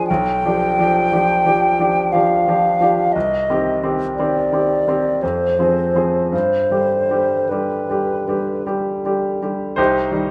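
A hollow, pure concert flute with vibrato and tongued notes sings a melancholic, solemn melody over a bright, brilliant grand piano accompaniment with short sustain in this slow romantic classical duo in 3/4, moving with rubato at 51-59 BPM through G7/B, Cm, Fm and G before the flute falls silent at 8.7 seconds and the piano settles on Cm until 10.3 seconds, all set in a moderate stone-room reverb with lossy compression artefacts in a passage cut from a longer piece.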